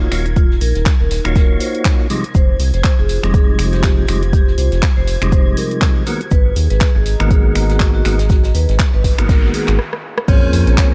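Deep house at 121 BPM with a swung 16th-note feel and a deep, moody, dark character, built on an up-front round analog bass, a deep, overdriven electronic kick and an overdriven layered drum kit of hi-hat, handclaps, finger snaps and rim clicks, with a distant, roomy shaker and snare far beneath. A percussive tonewheel organ stabs through chords from Ebm7 to Fm7 and Abm7, its fast rotary speaker and chorus vibrato churning beside a metallic, ringing vibraphone melody soaked in dub echo and 12-bit grit, while a warbling tape-like pad and a silky string pad breathe with sidechain pumping in the background. Near the end a noise sweep begins at 9.1 seconds, the groove stops for a drum fill, and an impact lands at 10.3 seconds on Bbm7, shortly followed by a soft, very quiet string machine.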